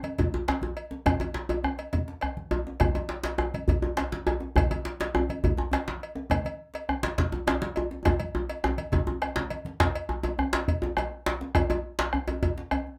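A driving 12/8 pulse at 137 BPM, counted in dotted quarters, powers this powerful West African traditional drum ensemble, cut from a longer piece. Two djembes carry the groove: one deep and warm, struck with hard hands, and a medium-tuned one sitting up front, joined by a round bombo that also sits forward in the mix. A metallic cowbell, close and dry, cuts through the texture, while low-tuned, ringing congas sit in the background. The first section reaches a drum fill from 8.1 to 9.8 seconds, after which the congas stop and the remaining drums and cowbell carry on into a brief closing section. The ensemble sounds as if gathered in a small, lively room whose short reverberation adds body to the drums.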